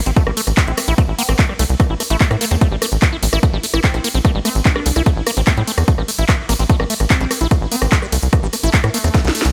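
Alien and hypnotic, this short psychedelic trance excerpt drives on a punchy, up-front electronic kick and a tight, nasal sequencer bass, while a squelchy liquid acid bass riff pumps with phaser and delay, a faint juicy blip pluck adds a resonant second line, an overdriven drum kit brings cracking snare and bright hats with handclaps, ride and rim clicks, a jingly tambourine sits close and dry in the background, and a drum fill closes things at 9.1 seconds.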